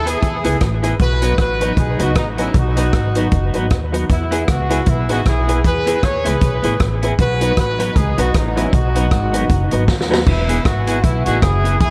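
A dry, close-sounding recording of bouncy, joyful ska at 155 BPM in E major, moving between E and B chords, with a punchy horn section carrying the melody with light vibrato and tape echo, a woody, growly pizzicato upright bass, a clean picked electric guitar with tremolo and tape echo, a mellow upright piano adding dark stabs in the background until 10.2 s, and an up-front swinging big-band drum kit with smooth, shadowy cymbals that plays a fill at 9.9 s.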